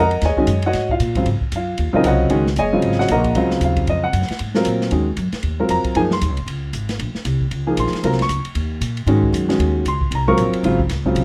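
Modal jazz with a searching, hypnotic mood, this short excerpt cut from a longer piece rides a brisk swing feel in 4/4 over a single sustained Ab9sus4 harmony. A woody, polished upright piano sits up front as the accompaniment, ranging from its middle register up into the high treble and carrying the most presence in the mix. Beneath it, a pizzicato upright bass with steel strings anchors the low end, sounding close and warm. An open jazz kit joins at 0.1 seconds with hi-hat, ride, snare and kick, set further back with dark cymbals, a medium-tuned snare, a boomy kick and a rolled-off top that suggests a small room. Light reverb and a rough home-demo quality give the whole performance an informal, intimate character.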